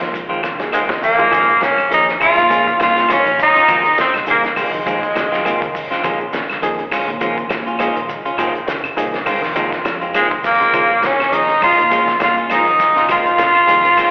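Heard as a live gig through the venue's PA with a telephone-thin, hall-reverberant sound, this funky, hypnotic afrobeat groove at 102 BPM in Bb minor swings between Fm7 and Bbm7 as a raspy, up-front tenor saxophone carries the melody from 0.7 to 5.7 seconds and again from 10.2 seconds, with a bright, punchy alto saxophone in the background adding a second line, over a reedy electric piano with slapback echo, clean picked guitar stabs with spring reverb, faint twangy arpeggios from a slightly broken-up guitar, a round, dark fingered bass, a muffled, fat-snared cloth-damped drum kit with a fill at 0.9 seconds, and very quiet high-tuned congas, grainy shekere and woody claves.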